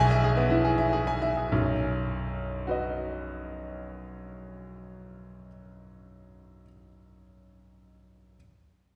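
Sparkling and brilliant, this short passage cut from a longer classical piece is a virtuoso piano study in B major, moving at 104 BPM in 4/4 with a flexible, rubato feel. A clear grand piano plays solo from 0.0 to 8.4 seconds, spanning a range from B1 up to G#5, its tone natural and intimate with the audible noise of the instrument's action. The opening gesture slows down through its first 1.5 seconds over an E/B chord before settling onto B at 1.5 seconds, where a new section begins and runs to 6.1 seconds. The piano sits up front, yet the recording places the listener further back in a wet recital hall, whose reverb of about 1.5 seconds lends the piano a resonant halo. Tuned slightly above standard pitch, at A4 = 441 Hz, the instrument rings with a clear tone.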